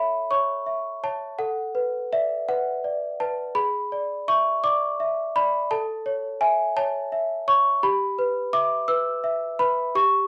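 Innocent and dreamy, this short classical lullaby for celesta drifts along at a gentle 56 beats per minute in 6/8, its dotted-quarter pulse loosened by rubato. A worn celesta plays alone from 0.0 to 10.3 s, moving between G4 and E6 in A major. Its bell-like tone is sweet and delicate, with the bite of hard felt hammers and a slightly out-of-tune shimmer. The harmony passes from A through Bm7/A, E7/G# and back to A before settling on Em/G as the passage is cut from a longer piece. Sitting up front in a damp studio reverb, the home cassette recording lends the instrument an airy, tape-softened glow.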